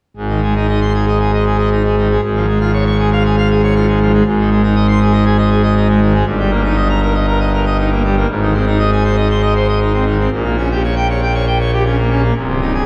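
A full pipe organ, majestic and brilliant with mixtures and a romantic voicing, sounds up front from 0.2 seconds in a jubilant classical toccata in a straight 4/4, its range reaching from deep bass tones to high treble while a wet church reverb lingers around it until this short section of a longer piece breaks off at 12.9 seconds.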